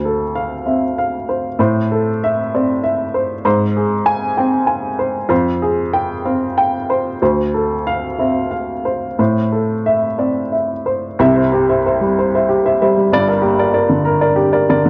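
A woody, polished upright piano plays alone from the start, its short-sustained notes sitting up front in a small room with light reverb and the character of a home cassette recording. This hopeful, peaceful neoclassical minimalist fragment moves in a rubato 6/8 at about 64 BPM in C major, drifting through Dm7, Am, Ab and Fmadd9 before the harmony turns to C and Gm at 11.2 seconds, and the piano spans the range from G1 to Ab5.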